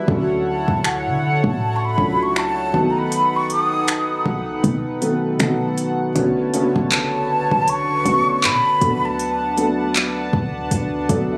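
Romantic and smooth, this contemporary R&B excerpt sways at 79 BPM in 4/4 with a gentle swing on the sixteenths, moving from Dmaj7 and B7 into Bm9 and D6 after 6.2 seconds. A breathy, hollow silver flute carries the melody up front from 0.5 to 9.8 seconds, its close-miked tone showing vibrato and tongued notes, with digital delay trailing behind it. Underneath, a felt-muted upright piano plays soft, intimate accompaniment with audible action noise and a vintage character, closing on a short fill from 10.7 seconds. A shimmering, retro pulse-width pad holds sustained chords with a soft attack and chorus, while a clean, boomy 808-style bass adds deep sine-toned notes with a fast attack that then decay. The electronic drum kit sits up front with a soft kick, crisp hi-hat, finger snaps and handclaps, roughened by overdrive. The whole mix is compressed and set in a light club reverb with the feel of a phone recording made in the room.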